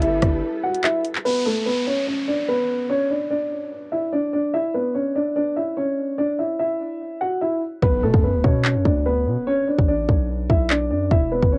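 Recorded at home on cassette with light reverb, this dark, menacing half-time drill excerpt is carried by a mellow, boxy grand piano melody, filtered and tape-treated with analog delay and plate reverb, that runs throughout. Lush bowed strings with vibrato sustain chords only at the opening, beside an electronic kit of hard-clipped kick, handclaps, rim clicks and bright hats and a punchy, heavy sine 808 that cuts out for a break at 0.4 s, the drums falling away soon after while electronic downlifter effects fill the middle. At 7.8 s an impact lands as the drums and 808 return, the hi-hats muted.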